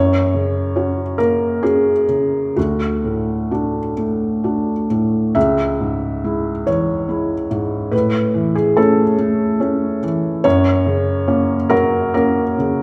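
Neoclassical minimalist piano in C# phrygian, reflective and melancholic, moving in a rubato 3/4 at roughly 63-73 BPM through a short passage cut from a longer piece. A felt-muted upright piano plays alone from 0.0 to 12.8 seconds, spanning C#2 to E5, its soft, boxy, intimate tone sitting up front with audible action noise under the thin felt. The same opening idea is stated twice, the second time from 5.4 seconds, over chords of F#, D, C#m, A and back to F#, all bathed in a wet recital hall reverb.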